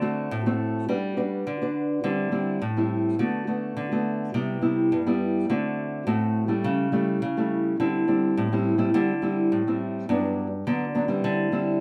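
Samba played on a lone nylon-string guitar, this short excerpt cut from a longer piece has a joyful, sunny mood at 104 BPM in 4/4 with a straight feel, set in G major. The guitar sits up front with a small, thumb-plucked acoustic tone, ranging from G2 to B4 as it carries the whole performance by itself from 0.0 to 11.8 s. Its harmony opens on D7 before settling into Gmaj7, then passes through D9sus4, Bm7/D, Cmaj7 and A7/C# along the way. A first section runs from 0.9 s, and a brief new section begins at 10.1 s, returning to Gmaj7 and closing on D9sus4. A moderate small-room reverb gives the intimate sound a touch of air.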